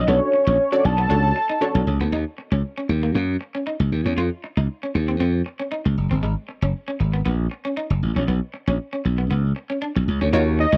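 Late-night and slick, this dry, close funk excerpt at 117 BPM opens with a fat, detuned analog lead solo carrying the melody with chorus and slapback echo until 2.1 seconds, over a growly, punchy slap bass up front, a twangy, slightly broken-up electric guitar riff with lush chorus throughout, and brief nasal polysynth comping, as the chords move from Bm9 through Ebm7 and Abm9 to Bsus2.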